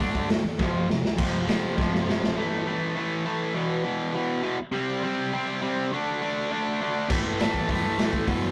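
A rough rehearsal-room recording with tube saturation and a small room's reverb gives this urgent, angry punk rock excerpt in A minor at 203 BPM a raw edge. A bright, overdriven, double-tracked electric guitar drives the riff up front throughout, joined at the start by a raw garage drum kit with a punchy kick, medium-tuned snare, hi-hat, crash cymbal, a rolled-off top and drum fills, and by a round, very quiet picked electric bass. Bass and drums stop at 2.3 seconds, leaving the guitar alone until they return at 7.1 seconds.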